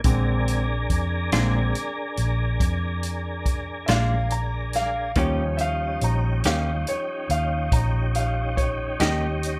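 Swaggering and laid-back, this slow blues excerpt in a straight 12/8 puts a clear, intimate concert grand piano in the spotlight, its polished tone carrying deep bass, long sustain and audible action noise, with the harmony moving from Bb7 to Eb7 at 5.2 seconds. Beneath it, a dark, round, foam-muted fingered electric bass sits up front beside a natural-sounding vintage drum kit with a tight kick, medium-tuned snare, hi-hat and a rolled-off top. A smooth tonewheel organ holds sustained chords through a slow rotary speaker and chorus vibrato, while a clean, compressed semi-hollow electric guitar with a scooped, hollow-body tone and tremolo joins at 1.3 seconds, all set in light reverb.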